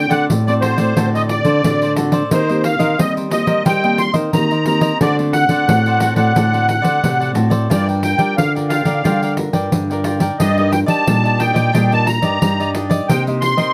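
Close, detailed microphones and light reverb give this bittersweet, yearning samba-choro excerpt an intimate sound, with a reedy, shimmering musette accordion carrying the melody up front in a vintage, band-limited tone. Beneath it, at a straight 89 BPM in 4/4, one nylon-string guitar plays accompaniment while a second supplies the bass line, joined by a crisp, picked cavaquinho and a jingly pandeiro that sounds close and dry. The harmony moves through D7, Cm7/Eb, Gm7 and Ebmaj7/G before settling on Cm7 at 13.1 seconds.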